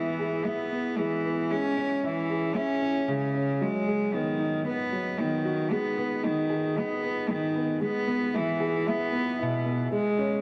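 A single bowed cello leads this hypnotic, melancholic electronica fragment at 114 BPM in a straight 4/4, its reedy gut-string tone sitting up front in a smooth, period-style melody. Alongside it, a dark upright piano plays a mellow, woody riff, and both instruments carry tape echo inside a huge ambient reverb with a 6.0-second tail. The passage is a build-up lasting the full 10.4 seconds, cut from a longer piece and moving through E, C#m, B6 and G#m before returning to E.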